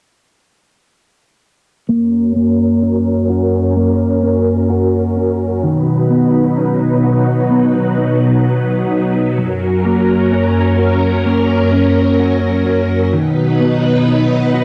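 A straight 4/4 pulse at 64 BPM carries this dreamy, floating dream pop excerpt in F# major, where shimmering vintage string-machine violins hold sustained chords up front with ensemble chorus and cassette-tape processing while a dark, clean, compressed electric guitar plays fingered arpeggios through subtle chorus and analog delay, both entering at 1.9 seconds over a filter sweep and a slow F#-to-B chord movement in a small, wet booth ambience.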